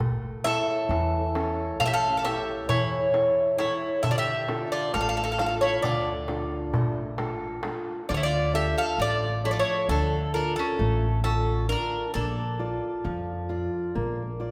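Greek folk in a melancholic, dark D harmonic minor, set in a straight 9/8 at 134 BPM, where an up-front, metallic Greek bouzouki carries the picked melody from 0.4 s, a bowl-back mandolin adds a bright double-string second line, a dark fingerpicked steel-string acoustic guitar with audible finger squeak plays the accompaniment, a woody, thumpy pizzicato upright bass anchors the low end, and a crisp metal-shell darbuka played with soft hands drops out at 7.8 s, all bathed in the long, wet reverb of a church or concert hall as the chords move from A to Dm to Bb in this passage cut from a longer piece.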